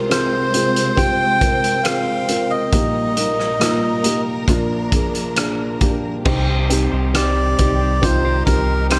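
Heard through light reverb and a small-room ambience, this fragment of a tender, hopeful pop ballad moves at an unhurried, straight pace. A soft, felt-muted upright piano with a mellow, vintage tone carries the accompaniment, while a lush symphonic string section holds bowed chords with expressive vibrato. Up front, a reedy, breathy melodica sings the melody through a touch of delay. A loose indie drum kit supports it with a punchy kick, gritty saturation and dark cymbals, using hi-hat, rim click and crash. At 6.3 seconds a deep, sine-like sub bass with octave enters up front, and a bright, clean electric guitar recorded direct adds compressed, picked arpeggios with spring reverb in the background.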